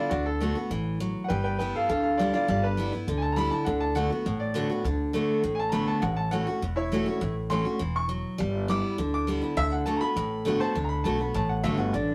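A rough rehearsal-room recording with moderate studio reverb captures this rollicking, rowdy rockabilly excerpt in D major, charging along at 203 BPM in straight 4/4. Up front, a clear, smooth upright piano with a vintage character carries the melody as a solo until 10.8 seconds, alongside a bright, full-bodied picked dreadnought steel-string acoustic guitar providing accompaniment. Underneath, a dark, woody upright bass with gut strings adds thumpy pizzicato from 0.1 seconds.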